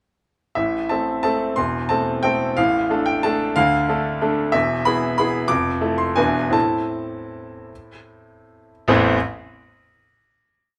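Elegant and wistful, this brief classical waltz for solo grand piano unfolds in a flexible rubato, with a single-line melody over a waltz bass. The piano sounds brilliant and open, sitting up front with a short sustain in light reverb. The playing slows from 6.0 seconds before settling on a final chord at 8.9 seconds.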